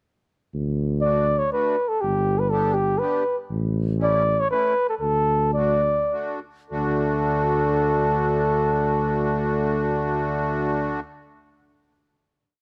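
A festive, bouncy alpine folk dance in 3/4, this short complete piece moves at 96 to 123 BPM in D major with a straight feel, slowing down between 3.5 and 6.7 seconds before settling onto a final chord that holds until about 10.4 seconds. The mellow tuba opens alone at 0.5 seconds, punchy and up front, playing root-and-fifth bass on the main beats in a classical style. At 1.0 seconds the flugelhorn joins with a mellow, motif-based melody built from period phrases, while the reedy accordion supplies sweet, dark off-beat triads with a light tremolo tuning. The harmony moves from D through G and A before returning to D. Close, detailed microphones capture the small band in a light reverb, giving the tuba and flugelhorn a clear, present sound.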